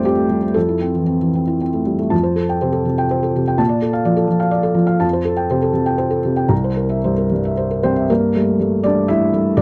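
Close and dry, the recording has the feel of a 1970s studio, with a felt-muted upright piano sitting up front in an intimate, mellow tone softened by thick felt. This short neoclassical minimalist piece, cut from a longer work, is in F major and 3/4 time, moving at roughly 111 to 128 BPM with a rubato feel that lets the pulse breathe. The piano plays alone for the full 9.6 seconds, ranging from C2 up to Bb5. It opens by moving from Fadd9 to Fmaj7, then from 2.1 seconds returns to Fadd9 and turns through Bbmaj7, back to Fadd9 and on to C7. At 8.1 seconds it closes on Gmadd9, leaving a hopeful, tender mood.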